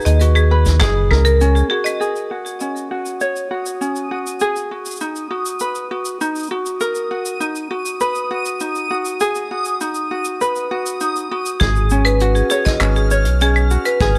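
A straight 4/4 pulse at 100 BPM runs through this short folktronica excerpt, carried by a vintage brush drum kit of claves, handclaps, hi-hat and shaker with a natural studio-room sound and rolled-off top. A punchy acoustic kick joins it at the opening and again from 11.6 seconds. The mood is autumnal and wistful, with chords moving from G#m7 through F#add9, C#sus4 and Bmaj7. A light, fingerpicked ukulele plays arpeggios up front throughout, its tone softened by a low-pass filter and tape echo. A round, deep analog bass blending sawtooth and sine with ring modulation sits dark and prominent at the start and returns with the kick, while a woody marimba on rosewood bars, struck with hard mallets, adds a percussive, band-limited second line through digital delay in those same passages. From 3.6 seconds a reversed, dreamy texture swells high above, detuned and granular with its own reverb, and a light reverb coats the recording.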